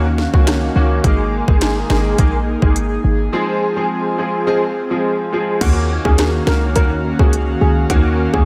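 A dreamy mix soaked in lush hall reverb frames this hypnotic, bouncy dancehall excerpt at 105 BPM in Eb dorian, moving from Ebm7 through Absus2 and Fm before returning to Ebm7. An up-front, overdriven electronic drum kit with a tight kick, sharp snare and smooth hats drives the groove over a punchy, decaying 808-style bass. A clear, polished concert grand piano with ensemble chorus and an airy, breathy pad with sidechain pumping fill the harmony throughout, and a shimmering, dark steel pan melody with delay joins them at 6.0 seconds.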